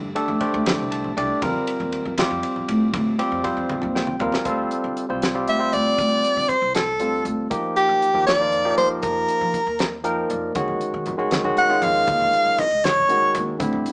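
An electric jazz fusion excerpt in a straight 6/8 with a nocturnal, slick mood, built on a barky, bright tine electric piano up front with fills, a woody pizzicato upright bass on gut strings, a damped 70s drum kit with a fat snare, tight kick and rolled-off top, and low-tuned, thin-skinned congas tucked in the background, joined at 5.5 seconds by a breathy, close-miked soprano saxophone solo with vibrato over sus and minor seventh chords, all heard as a band playing live in one room with moderate large studio reverb and a small speaker sound.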